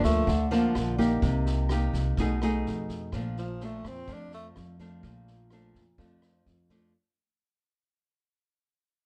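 Sophisticated and relaxed, this short bossa nova fragment in Bb major moves at 126 BPM in a straight 4/4, with a fingerpicked nylon-string guitar up front carrying the accompaniment through Gm7, Cm7, B6 and Bbmaj7 while a woody, growly pizzicato upright bass and a vintage drum kit with punchy kick, rim click and a rolled-off top hold the groove beneath. A breathy tenor saxophone with subtone, light vibrato and scooped notes takes the solo, sounding from 0.0 to 0.5 seconds and again from 3.4 to 4.5 seconds in a mellow jazz style, bathed in plate reverb. The whole passage fades out in a moderate studio room heard from further back.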